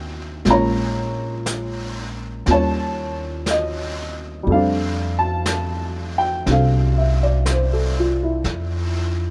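A dark, worn upright piano sits up front with a boxy, slightly detuned tone and short sustain, moving through Bbm7, Eb9 and F6 in this late-night, intimate jazz ballad excerpt at a slow 60 BPM with a gentle swing in F major, tuned a little flat at A4 = 437 Hz. A growly, thumpy pizzicato upright bass anchors the low end, and a brushed drum kit with a rolled-off top enters softly at 0.5 seconds on snare and hi-hat. The close, detailed sound has little reverb, giving the whole trio an intimate closeness.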